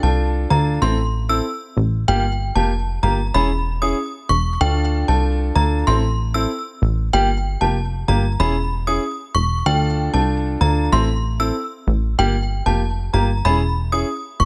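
A straight 4/4 dancehall groove drives this hypnotic, sultry excerpt: a punchy, funky analog bass with a filter pluck sits up front under a warm baby grand piano's open, long-sustaining accompaniment, while an inharmonic FM synth chime rings high above with ensemble chorus and digital delay, as the Dm, Am, Gm7 and E6 cycle repeats throughout.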